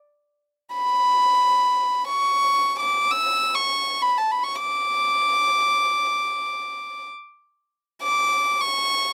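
A single bowed violin enters at 0.7 s and sings in free time, its soft attack and airy bow giving a floating, pure tone with a slightly boxy body as it holds the high register between A5 and E6. This brief cut from a longer Arabic maqam ensemble piece feels stately and passionate, tuned to A4 = 439 Hz. The up-front violin is captured with close, detailed microphones and light reverb, and plays until 9.1 s.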